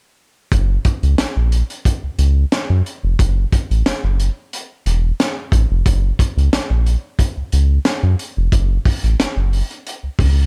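Funk at 90 BPM in a straight 4/4, this energetic excerpt pairs a round analog bass with a crunchy breakbeat drum kit, both entering at 0.5 seconds and running to the end of the cut. The bass sits deep between E1 and F#2, mixing sawtooth and sine tones with a fast attack and sustained notes, while the kit, heard as if in a small room, brings a punchy kick, a high-tuned snare and hi-hat with a saturated, gritty edge and a rolled-off top. Both parts are up front in a dry mix with little reverb, giving the groove a close, dark character.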